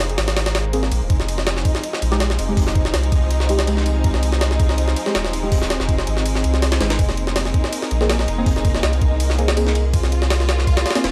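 A compressed, pitched-up jungle drum kit sits up front, its thumpy kick, high-tuned snare, hi-hat and ride giving this dark, raw drum and bass cut a gritty sampler edge at 163 BPM in F minor. Beneath it a soft, round dub sub bass holds deep sustained notes, while a woody, lush bowed string section with vibrato carries chords moving from Abadd9/F to Fm7 and back. From 0.7 s a mellow, wave-folded chord stab drifts in the background through chorus, phaser and dub echo, and the recording has a dry, digital ambience.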